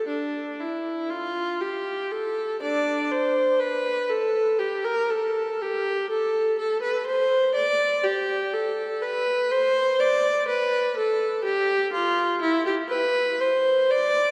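A classical, baroque-style suite movement for unaccompanied viola in A minor, heard in a brief passage cut from a longer piece, moves at a flowing, dance-like 61 BPM in 4/4 with a free, rubato feel. A single bowed viola plays alone from 0.0 to 14.3 seconds, ranging from D4 to D5 with a rich, smooth tone, even phrasing and vibrato, sitting up front. A wet church reverb with a 3.3-second decay surrounds the instrument in a resonant, spacious church.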